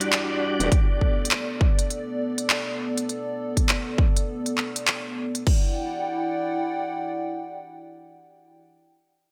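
A dark, detuned analog pad holds sustained Em9 and Bm7 chords with chorus and sidechain pumping, joined at the start by a brief reedy tonewheel organ stab with key click, slow rotary speaker and digital delay, in this funky, swaggering glitch hop excerpt at 101 BPM in E minor with a 16th-note swing. A crisp dubstep kit of crash, handclaps and hi-hats with gated reverb runs to 5.6 seconds, while a saturated formant-sweep wobble bass flashes on E1 at 0.6 seconds and a punchy, tape-warm electronic kick sits up front from 0.7 seconds. The pad returns to Em9 at 5.5 seconds and carries on alone once the drums stop at 5.6 seconds, all in a bright 1980s-style digital production with light reverb.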